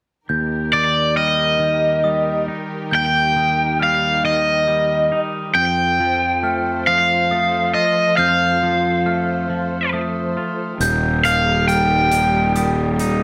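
In a slow 6/8 at 46 dotted-quarter beats per minute with a straight feel, this cinematic, euphoric post-rock passage in Eb lydian is cut from a longer piece. From 0.3 seconds a veiled, con sordino string section holds distant bowed chords with gentle vibrato. A mellow, bell-like glockenspiel played with soft plastic mallets and a clean, compressed twangy electric guitar spin arpeggios alongside it, both carrying a slapback echo. At 0.7 seconds a cranked stack guitar takes the melody up front, bright and overdriven with its own slapback. The harmony moves from Eb to F and back to Eb, and at 10.8 seconds a growly, punchy fuzz bass settles on a low Eb while a natural-sounding hi-hat joins from a big room. A wet, large studio reverb lends the whole passage a spacious glow.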